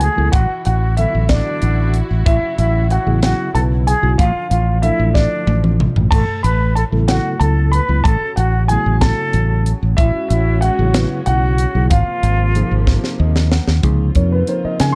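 Funky and bright, this electric jazz fusion excerpt moves at 62 BPM in a straight 6/8 and sits in A major, with a dark, warm small-room production. A dark, mellow concert grand piano carries the melody with a smooth, vintage tone and short sustain. An airy, bright, close-miked concert flute adds an expressive second line with vibrato and soft attacks until 13.2 seconds. A reedy electric piano with fast tremolo fills in the accompaniment through its built-in speakers, and muted, veiled strings hold con sordino chords in the background. Up front, a round, punchy fingered bass and a crisp, polished drum kit with a high-tuned snare and punchy kick drive the groove, the drums playing fills at 5.2 and 12.9 seconds, the latter joined by an electric piano fill. Over harmonies moving from Dadd9/A through E69/A and G#69 to a closing Dbmaj9, the grand piano takes a short solo from 13.8 seconds.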